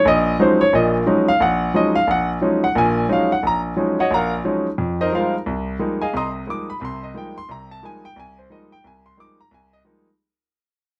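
A clear, intimate grand piano plays alone, up front with audible action noise and light reverb, ranging from low Bb1 to high Eb6 over Ebm11 and Fm11 chords in a searching, spiritual swing-jazz excerpt that fades out across its 10.2 seconds.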